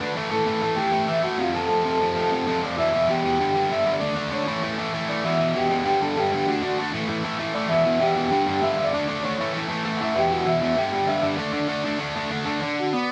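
Rebellious and upbeat, this punk passage cut from a longer piece charges along at 195 BPM in a straight 4/4, with a bright, overdriven, double-tracked electric guitar riff sitting up front beside a mellow, ringing vibraphone melody played with soft mallets and a medium motor vibrato, both heard throughout as the band plays live in one large studio room with moderate reverb, cycling through Em, G5, D5 and A after a short opening on A5 and F.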